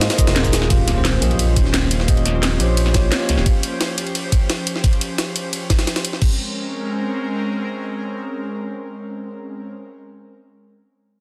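A knocking electronic kick, layered and up front with the roomy character of a small space, drives this dreamy, soulful liquid drum and bass passage at 174 BPM in a straight 4/4. Around it, a layered drum and bass kit adds a cracking snare, bright hats, shaker and crash, while a gritty, pitched-up jungle sampler-style kit brings a high-tuned snare and ride with tape-warm, compressed grit and high-pass filtering on its cymbals and snare. A smooth, mellow sawtooth-and-square synth bass with vibrato sits up front beneath a clean, bell-like tine electric piano treated with phaser and digital delay, both dropping out at 3.5 seconds. A soft, breathy, detuned pad with chorus, ring modulation and a noise layer carries the harmony through Ab69, Eb13 and Bbm9, and it lingers alone once the drums stop near 6.3 seconds. A very quiet, woody kalimba plucks brief arpeggios at the start, and a faint electronic impact lands at 0.7 seconds, all set in light digital ambience within a dense, heavily limited modern master.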